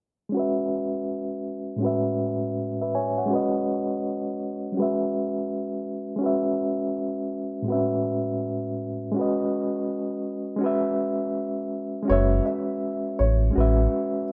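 An 82 BPM groove in 4/4 with swung 16ths sets up this hazy, reflective lo-fi hip hop piece in F# minor, cut from a longer work. An overdriven reed electric piano carries the accompaniment from 0.3 s, up front and gritty through a combo amp, with fast tremolo and a cassette-tape coloring, moving from F#5 through B and E while a filter sweep runs across this opening stretch. At 12.1 s the harmony shifts to F#m7 and then A6, and two parts arrive together: a deep, full sine sub bass doubled at the octave, with a fast attack and sustained notes sitting up front, and a dark upright piano playing a brief, mellow, woody melody with short sustain in a high register. Light reverb and a low-pass filter give the whole a rough home-demo character, and the piece breaks off at 14.3 s.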